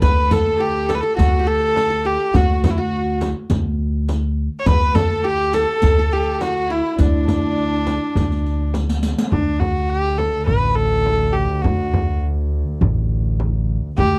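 A clear, nasal kamancheh carries the melody up front with light vibrato and portamento in this festive, passionate excerpt from a Turkish makam ensemble, shadowed until 8.7 seconds by a fingerpicked qanun in the background and a very quiet, distant violin section, while a growly pizzicato upright bass and a deep frame drum hold the low end, a riq with dark jingles plays until 9.3 seconds as a drum fill closes the first section, and at 9.3 seconds a woody bowed double bass drone enters, all captured in a dry, close studio sound.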